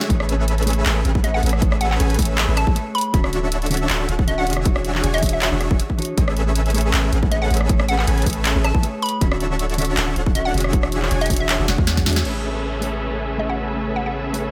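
Playful and lush, this future bass drop at 158 BPM in A major rides a half-time swing: a huge, detuned supersaw riff pumps against the sidechain while a hollow, bouncy square pluck melody carries chorus and dub echo over a dark, clean electric guitar, a deep sine 808-style bass and a hard-clipped kick up front, a trap kit of sharp snare, bright hats, handclaps, rim clicks and crash cymbal, and background swell and downlifter effects, until a drum fill at 11.7 seconds leads at 12.3 seconds into distant, gut-string chamber strings with 12-bit sampler grit.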